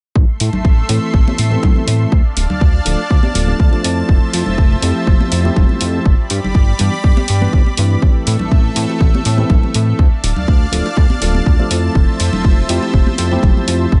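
Nu-disco at 122 BPM in A minor, sensual and groovy, with a punchy, tape-warm electronic kick up front, a layered electronic hi-hat, ringing congas and bongos in the background, a glossy retro synth bass built on pulse, sawtooth and triangle waves with a filter pluck, a clean tine electric piano through a combo amp carrying a filter sweep, tape echo and sidechain pumping, and a lush, detuned unison pad holding sustained chords with chorus and pumping over Am, Dm, Fmaj7 and Em7/G in a dry mix.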